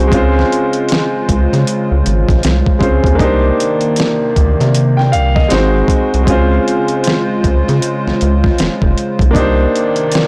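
R&B with a neo-soul lean, this short cut from a longer piece moves at a slow 78 BPM in 4/4 with a swung sixteenth-note feel, sultry and smooth in mood. A clear, intimate grand piano carries the accompaniment up front, its natural tone marked by audible action noise as it voices the chords Dbmaj7, Cm9, Ab7 and back around. Underneath, a hollow, flute-like pad holds dark sustained chords with a slow attack and a chorus effect, sitting lower in the mix. A rubbery square-wave bass bounces along up front with a resonant filter pluck and tube saturation, dark and sustained, and it drops out at 9.7 seconds. The dusty, sampler-style drum kit enters at 0.1 seconds with hi-hat, a thumpy kick and a fat snare, compressed and gritty with overdrive. The whole recording is blown-out and overdriven, set in light reverb and digital ambience.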